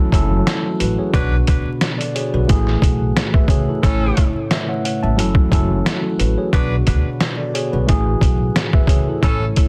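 Dry, dense and heavily limited under a layer of vinyl crackle, this moody, tough boom-bap hip-hop excerpt sets a muffled, pitched-down sampler drum kit with a thumpy kick up front over woody pizzicato upright bass, a worn, slightly out-of-tune tine electric piano with light overdrive and cassette grit, a soft, flute-like tonewheel organ turning through a slow rotary speaker in the background, and clear, tight jazz saxophone stabs with vibrato and delay that enter at 1.1 seconds.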